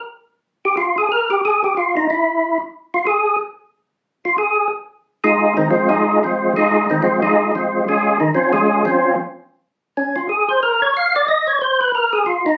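Jazz with a soulful, late-night mood, this short cut from a longer piece swings briskly at 183 BPM in 4/4 with a lilting eighth-note feel. A percussive tonewheel organ carries the whole thing as a solo voice, entering at 0.7 seconds and playing until 12.6 seconds across a range from Eb3 to F5. Its tone is fat and lightly overdriven, with a third-harmonic percussion bite, audible key click, chorus vibrato and a slow rotary speaker, all sitting up front in the mix. The harmony moves from an open, chordless opening to Fm7 at 4.0 seconds, then settles on a lush Eb13sus4 before returning to open, unaccompanied territory near the end. Captured on a phone in a studio, the sound carries a short, wet room reverb and a dulled top end that gives the organ a close, intimate, slightly lo-fi character.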